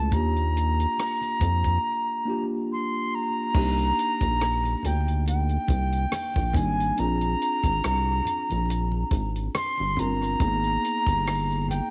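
An airy, slightly distant silver flute melody, a worn, slightly out-of-tune tine electric piano and a rubbery, wave-folded square bass open this smooth, relaxed neo-soul R&B excerpt together, joined at 0.1 seconds by a dry cocktail drum kit with dark cymbals and a tight kick and by very quiet, thin-skinned congas, with a break from 1.8 to 3.5 seconds, chords moving from Ebmaj9 through Cm9 and Bb9 to Abmadd9, and a plate reverb and vinyl crackle over a dulled top end.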